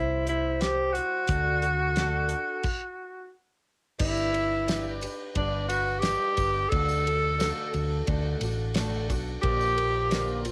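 Hopeful and jangly, this folk rock and heartland rock excerpt puts a tenor saxophone up front, its distant, roomy pop-style tone carrying the melody with light vibrato. Beneath it a boxy, shimmering, octave-doubled twelve-string acoustic guitar is picked with audible finger squeak, and both sax and guitar carry a cassette tape colour. A dark, round hollow-body electric bass sits forward in the mix. A dry, damped 70s drum kit with a fat snare and tight kick enters at 0.3 seconds, and a brief stop from 2.7 to 4.0 seconds leads into the second section. A bright, jingly tambourine joins quietly in the background at 4.2 seconds, all within a home cassette recording touched with light reverb.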